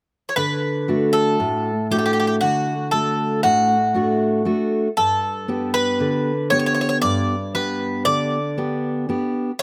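A bright, metallic Greek bouzouki with double and octave-doubled strings carries the melody up front, touched by a slapback echo, over a full-bodied fingerpicked dreadnought steel-string guitar in this tender Greek folk excerpt in 9/8, which moves from D to G at 5.0 seconds and sounds dry and open, as if played outdoors.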